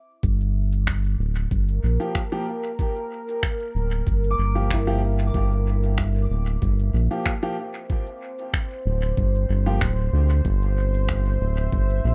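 The sound is dry, with little reverb but heavy echo through the mix, giving this cut from a longer ambient dub piece a spacious, hazy mood at 94 BPM in a straight 4/4, centred on G dorian. A round analog bass sits up front from the start, deep and dark with a ring-modulated edge. A muffled, thumpy electronic kick and tape-tinged electronic cabasa and finger snaps keep the pulse, with dub echo trailing the cabasa and snaps. A moody pad enters at 1.8 seconds with detuned, chorused sustained chords and a slow, mellow bloom, and a clear, woody upright piano adds echoing stabs with audible action noise from 2.0 seconds. Briefly from 4.3 seconds, a thumb-plucked concert harp rings out in echoed arpeggios, while the harmony rests on G minor before moving to C near the close.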